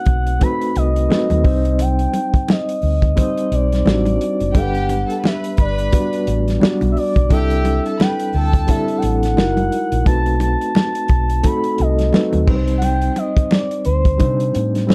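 A dark, softly reverberant production frames this lush 1970s-style soul groove at 87 BPM, swung on the sixteenths and moving through chords like B7b9, Cmadd9 and Gmaj7. A smooth, evolving sawtooth synth lead carries the melody with chorus, vibrato and plate reverb over a reedy electric piano with light overdrive and fast tremolo, while a round, punchy fingered bass and a gritty, saturated drum kit with dark cymbals sit up front, and very quiet bright congas add texture. A floating, distant chamber string section drifts in as a second line from 4.5 to 9.0 seconds in this section cut from a longer piece.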